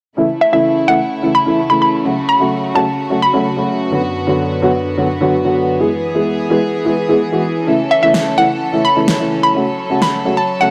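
Festival progressive house at 128 BPM in A major, this triumphant, uplifting excerpt moves through A, F#m, Bm/F# and E. A dark, boxy baby grand piano with audible action noise and dub echo sits up front over a rich, floating bowed string section holding sustained chords, while a hollow, detuned square-wave pluck with chorus and dub echo carries the bouncy melody from 0.4 s, pauses, then returns at 7.9 s. A huge, layered electronic snare under a low-pass filter arrives at 8.1 s, all set in a lush hall reverb with small room ambience.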